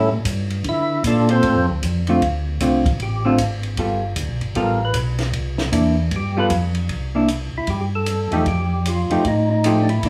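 A fat, lightly overdriven tonewheel organ with third-harmonic percussion, vibrato and a slow rotary speaker leads this bluesy, swinging soul jazz organ trio passage, soloing through the first 6.9 seconds. A clean, fingered hollow-body electric guitar plays the accompaniment, while a round, mellow second tonewheel organ carries the bass with chorus vibrato and its own slow rotary speaker. A compact cocktail drum kit with a punchy kick, high-tuned snare and dark cymbals joins at 0.3 seconds in a tight booth, all set in a moderate studio reverb that keeps both organs and the guitar up front.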